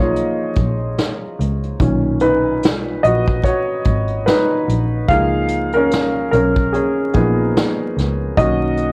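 A relaxed 73 BPM groove in 4/4 with a lazy swing on the sixteenths sets this short, cosy and nostalgic lo-fi hip hop clip in D-flat mixolydian, cut from a longer piece. A woody upright piano sits up front and carries a solo across the full 8.9 seconds, moving between Db6 and Cbmaj9 chords, its tone softened by a low-pass filter and cassette tape coloring. Beneath it, a single bowed double bass holds low notes with smooth, even vibrato and a touch of tube saturation. A vintage brush drum kit enters at 0.2 seconds, with hi-hat, a punchy kick and a medium-tuned snare played with brushes in a natural studio room, its top end rolled off and placed up front. Light reverb, vinyl crackle and worn, warbling old tape with pitch drift give the recording a faded, homely character.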